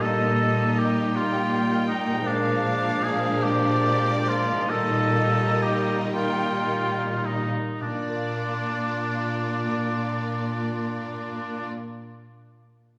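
Set in the wet, spacious reverb of a scoring stage, this tender, lyrical fragment of a slow romantic orchestral movement sways in a rubato 6/8, slowing from 1.2 to 7.8 seconds before the harmony settles from Eb over a Bb bass onto Bb at 7.8 seconds. Rich, expressive violins carry the high melody while a focused, close second violin line and a distant, roomy oboe with vibrato weave supporting lines beneath. Smooth, even violas fill in the accompaniment, close cellos hold a steady Bb in the bass, and a very quiet, bright harp rings out thumb-plucked arpeggios, sounding on alone after the others stop at 11.7 seconds until 12.5 seconds.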